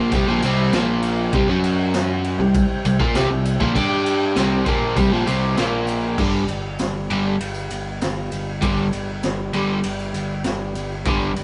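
A straight 4/4 pulse drives this raw, swaggering garage rock fragment, with a double-tracked overdriven guitar riff up front, a punchy fuzz bass beneath it, a mellow combo organ holding sustained chords with light vibrato in the background, a gritty small-room drum kit with boomy kick and high-tuned snare, and a very quiet jingly tambourine, the band playing live together in one room and moving into a new section at 6.2 seconds.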